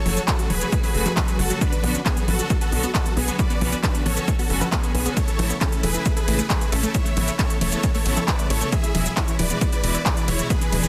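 A dense, heavily limited modern master with digital ambience frames this emotional, euphoric uplifting trance excerpt, which moves at 135 BPM in a straight 4/4 over a progression of F#m, Bm, A and E. A huge, thick supersaw carries the melody from the very start, its detuned sawtooth layers given air, vibrato and a dub echo, and it pumps against the sidechain along with the other melodic parts. Beneath it, a rich symphonic string section holds bowed sustained chords in the background, while a lush unison pluck spins arpeggios through a delay, its tone shaped by a filter sweep and a moving notch. A tight, nasal sequencer bass drives the low end with a decaying filter pluck. Up front, an overdriven big-room dance kit brings crisp hats, ride cymbal, handclaps, congas and shaker from 0.1 seconds, and a punchy layered electronic kick, re-recorded in a large room, enters at 0.3 seconds and stops at 10.6 seconds.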